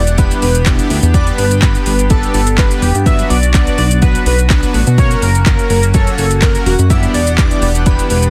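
Dance-pop at 125 BPM in B minor, this confident, driving excerpt rides an Em7–G–Bm–F# progression over an up-front deep house drum kit of deep kick, metallic hats, handclaps and shaker, roughened with overdrive. A dark, glossy chorused synth bass sits just as far forward, while a fat, detuned sawtooth polysynth enters at 0.2 s and a shimmering pulse-width pad hangs in the background, with the bass, pad and polysynth each breathing to sidechain pumping. On top, an airy, dreamy lead with vibrato and a moving notch carries the melody through chorus, delay and the same pumping, all set in digital ambience within a dense, heavily limited modern master.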